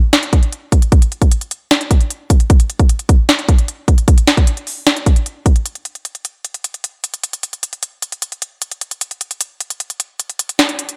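A hard-clipped kick, sharp snare and crisp hi-hats from an electronic trap drum kit sit up front from 0.1 seconds, carrying this menacing, melancholic hip hop excerpt. At 152 BPM in 4/4 with a half-time feel, the produced beat moves into a new section at 5.7 seconds and plays on through 11.0 seconds, set in a digital ambience. The clip is cut from a longer piece.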